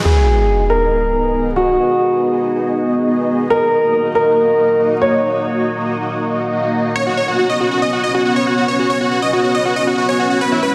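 A straight 4/4 trance pulse at 139 BPM drives this emotional excerpt in G# minor, tuned to A4 = 436 Hz. It opens with an electronic sub drop and riser impact under a mellow, vintage baby grand piano, which carries a digital delay across G#m and D#m chords. At 7.0 s a huge, detuned supersaw melody with dub echo and vibrato takes over on F#sus4, and the sound effect returns at 10.7 s, all inside a lush hall reverb and a dense, heavily limited master.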